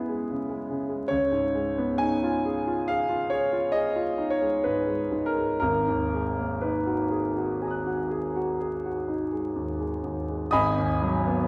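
A clear concert grand piano, up front with deep bass and long sustain, plays solo through this nocturnal, mysterious impressionist classical fragment cut from a longer piece, moving in a rubato 5/4 at 58-74 BPM in G# dorian through F#9sus4 and C#9 chords that settle onto G#m9 at 5.6 seconds, all set in a wet recital-hall reverb with vinyl crackle.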